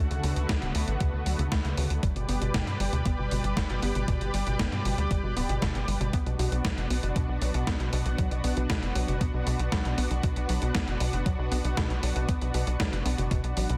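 A punchy, nasal sequencer bass drives this nostalgic, romantic synthwave excerpt from the start, sitting up front beneath a silky analog string pad with ensemble chorus, vintage 12-bit sampler grit and sidechain pumping, and a warbly, dusty pluck playing chorused, delayed arpeggios. A gated 80s digital drum machine with hi-hat and gated-reverb snare enters at 0.1 seconds, joined by a thumpy, tape-warm electronic kick from 0.5 seconds. The harmony moves from Dmaj7 to G and then Bm, set in light digital ambience with a dense, heavily limited modern master.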